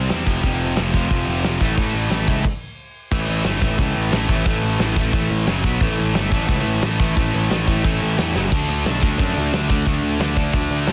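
A punchy, up-front rock drum kit of crash, kick and snare drives this energetic, upbeat punk rock cut alongside a growly, fuzz-soaked picked bass and two bright, overdriven picked electric guitars riffing on chords such as F5, A5 and B5, with a stop from 2.4 to 3.1 seconds, a drum fill at 8.3 seconds, and a dry, dense, heavily limited modern sound.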